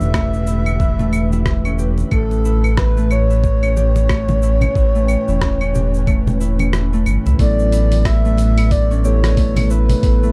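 A swung sixteenth-note groove at 91 BPM in 4/4 sets an unhurried pulse for this peaceful, earthy stretch of organic downtempo in A mixolydian, cut from a longer piece. A gritty, thumpy electronic kick and a dusty sampler-style kit of claves, hi-hat, rim click and shaker sit on compressed, small-room grit, while warm acoustic congas murmur in the background. Up front, a smooth, dark synth bass glides between notes with portamento and sidechain pumping, under an ethereal, airy pad whose detuned, wave-folded chords breathe with ensemble chorus and their own reverb over Em9 and A9. A ringing, fingerpicked Celtic harp spins arpeggios through digital delay, and a breathy, flute-like synth lead with vibrato, lush chorus and delay carries the melody. The kick drops out at 6.7 seconds, and at 7.4 seconds the harmony shifts to Gmaj7/A as a mellow, clean tine electric piano joins, all within a dark, warm, fairly dry production.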